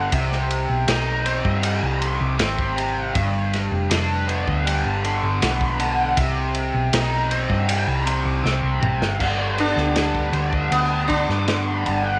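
An overdriven, double-tracked garage guitar riff with flanger opens this mysterious, trippy psychedelic rock excerpt over a dark, round hollow-body bass. A gritty, saturated breakbeat kit with a rolled-off top and tight kick joins almost at once. A drum fill at 8.4 seconds leads into a new section at 9.2 seconds, and at 9.6 seconds a buzzing, shimmering sitar enters with a brief melody touched by slapback echo, all set in light reverb and small room ambience.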